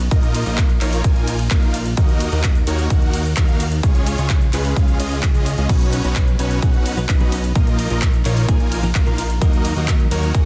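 Festival progressive house in Eb minor at 129 BPM, this powerful, anthemic excerpt drives on a punchy, up-front electronic kick and an overdriven big-room kit of crash, ride, handclaps, hi-hat and shaker, while a fat, detuned sawtooth bass pumps against the sidechain beneath huge, lush supersaw chords carrying the riff with dub echo. At 5.7 seconds a clean, fingered electric guitar slips into the background with spring reverb and echo, riding the Badd9, Bbsus4 and Ebm changes that close the chord cycle. The mix is dry, dense and heavily limited in a modern master.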